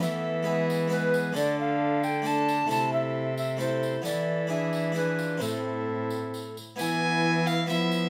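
In a straight 3/4 at 133 BPM, this brief excerpt of a courtly, solemn renaissance-style consort dance sets a gut-strung, reedy violin melody alongside an airy, chiffing tenor recorder second line, with a clear, punchy trombone and a brilliant, plucked harpsichord in accompaniment, a rich, up-front cello bass and a jingly tambourine, all playing throughout the 8.1 seconds in a lightly reverberant, closely detailed sound as the harmony moves from Esus4 through Dm and Am/C to E7 and Am before settling on E.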